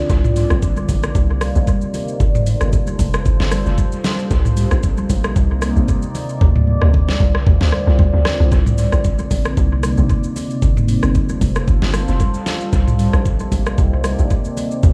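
A 114 BPM amapiano groove swings its 16ths over an up-front electronic R&B kit with a knocking kick, deep snare, metallic hats, rim clicks, shaker and toms, its hi-hats dropping out from 6.4 to 8.5 seconds while dub echo trails the kit and the bright, thin-skinned congas in the background. A hollow, bouncy FM log drum bass with a fast attack and mellow decay carries the low end up front, beneath a moody, detuned sawtooth pad that warbles with chorus and phaser and pumps to the sidechain. In C dorian, the soulful, late-night excerpt moves through Cm9, G9sus4 and Dm7 in an echo-heavy mix with light digital ambience.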